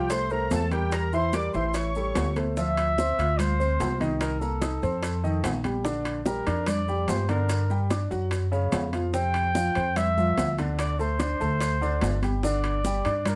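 A dark trumpet with light vibrato carries the melody from start to finish, sounding distant and roomy under a plate reverb in this lively, sophisticated Afro-Cuban jazz excerpt in D minor at 146 BPM. A reedy, shimmering musette accordion adds a second line only for the first 2.4 seconds, while a woody upright piano with long sustain sits up front, supplying polished accompaniment across a broad range. A growly pizzicato upright bass with steel strings is the most forward part, anchoring the low end. From 0.1 seconds the percussion fills in behind: bright, high-tuned congas struck with hard hands, round low-tuned bongos, ringing vintage timbales with a metal shell, and grainy, mellow maracas heard from afar in a large room. A drum fill at 2.2 seconds leads out of the opening into a longer passage whose harmony runs from Dm9 through Cm7, F7 and Bb6 toward sparse open chords, all bathed in light reverb.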